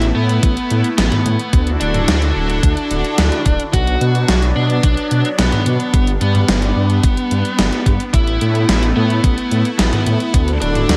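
A driving, cinematic synthwave passage cut from a longer piece opens with a distorted, bluesy lead guitar picking out the melody over a swirling, bright analog pad that pumps with sidechain and shimmers with phaser and chorus, while a deep, rumbling detuned saw bass saturated through tube warmth sits up front. A gated 80s digital drum machine drives hi-hat, snare and toms with that signature gated reverb snare and overdrive, and an overdriven, thumpy electronic kick joins at 0.4 seconds and drops out at 10.4 seconds. The guitar carries tape echo, while the mix overall stays dry and close, giving the punchy drums and gritty bass a forward, in-your-face presence.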